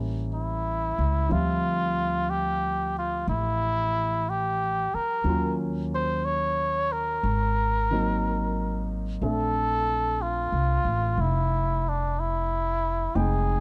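Dry and dark, this intimate, tender jazz ballad at 61 BPM with a gentle swing places a veiled, cup-muted trumpet with vibrato up front from 0.3 seconds, over a natural-sounding grand piano and a woody, growly pizzicato upright bass, moving from A7b9 and Dm11 through Ebm7 and Ab9 to Bbmaj9#11 in a short passage cut from a longer piece.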